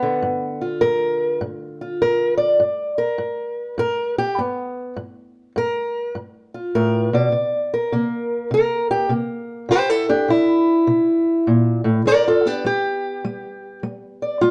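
Acoustic country blues with a rollicking, swaggering mood at 101 BPM in a swung 4/4, played as a solo by a fingerpicked old ladder-braced steel-string guitar whose woody, boxy tone and old strings sit up front, moving from G7 to C7 and back to G over this 14.5-second cut from a longer piece, wrapped in light reverb and a dark, warm production.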